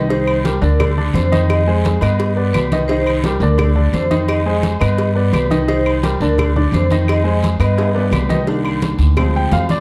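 A dark, lightly reverberant production frames this fiery, danceable salsa cut in C minor at 172 BPM, with a clear, slightly detuned upright piano and a thumpy, bright pizzicato upright bass sitting up front over a Cm7–Fm7–G cycle. A smooth vibraphone with hard mallets carries a ringing second line with medium motor vibrato until 8.4 seconds, while low-tuned damped congas, a tight high cowbell and woody claves sit in the background alongside a raspy saturated guiro and distant metal-shell agogo bells and timbales. A drum fill at 7.8 seconds leads into a short upright piano solo from 8.5 seconds, which closes over Cm7 and Dm7b5.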